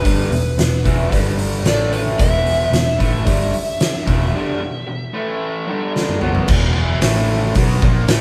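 An oversized, low-tuned drum kit sits up front with a boomy kick, fat snare and dark cymbals, saturated and gritty in a bright, pumping stone room, driving this swaggering blues rock and southern rock cut from a longer piece at 112 BPM in 4/4. A raw, double-tracked garage guitar riffs on bright overdriven power chords around E5, G5 and A5 with spring reverb, over a round, punchy foam-muted bass, while a dark overdriven slide guitar carries the melody until 5.9 seconds. After a break with a drum fill at 6.0 seconds, the band, playing live in one room, moves into a new section at 6.5 seconds.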